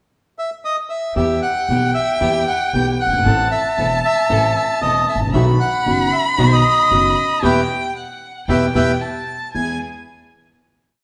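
A dark, reedy bandoneon opens alone with a pickup at 0.4 s, carrying a motif-based melody in period phrases up front. At 1.2 s the rest of the band enters together: a distant solo violin plays a bowed counter-melody with vibrato and portamento, while a concert grand piano with deep bass and short sustain, a woody, growly pizzicato upright bass, and a very quiet studio string section with gut-string tone mark a marcato tango rhythm in four. This is a dramatic, melancholic tango in 4/4 with a rubato feel, its harmony moving from Em through Am and B back to Em. The whole band hits accents together from 7.4 s before the piece settles on a closing E chord. The group sounds as if it is playing live in one stone room, with a wet reverb and a soft, rounded top end.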